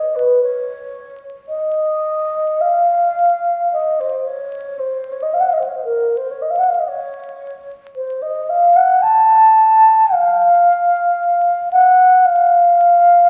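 Meditative and yearning, this short classical fragment cut from a longer piece features a solo alto flute with a wooden head, its pure, straight, tongued tone sounding both up front and distant in free rubato, floating through a wet recital hall reverb beneath the crackle of a very old 78 rpm record.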